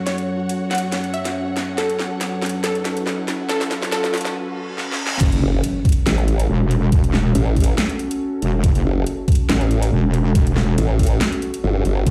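A pair of heavy, overdriven wobble basses dominates this chaotic, menacing heavy wobble dubstep excerpt in F# minor at 140 BPM. The first arrives with the drop at 5.2 seconds and the second follows at 5.4 seconds. One is square-wave and resonant; the other is a sawtooth voice run through a formant filter, and both are detuned, compressed and up front. Alongside them, a knocking, layered electronic kick drum drives a half-time 4/4 feel with a slight swing. Before the drop, the build-up pairs a close, woody string section bowed with vibrato and a lush, punchy unison pluck melody carrying delay. Meanwhile, an evolving, warbling wavetable pad holds F# minor chords under a filter sweep, with chorus and sidechain pumping. A dubstep drum kit with a huge snare and metallic hats plays fills through the build-up. In the background, a riser climbs from 1.7 seconds, a reverse cymbal fills the brief break, and an impact lands with the drop. 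The mix sits in large studio reverb, sounding as if played on a big sound system in a bare room.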